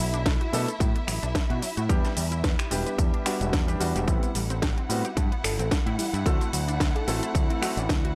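A punchy, overdriven electronic kick sits up front in this sleek, cosmic nu-disco clip at 110 BPM, joined by a growling, bright fingered electric bass and a gritty house kit of finger snaps, hi-hat, shaker and a cracking snare, all with a light 16th-note swing. Lush, distant bowed strings and a worn baby grand piano with long sustain pump against the kick over Bm7, Em7, Am9 and D7, while a detuned analog pluck sparkles with chorus and delay in the background. At 5.4 seconds a soft, round, octave-layered synth lead enters with chorus and vibrato. The dry, hardware-recorded mix keeps a raw edge until the clip ends at 8.2 seconds.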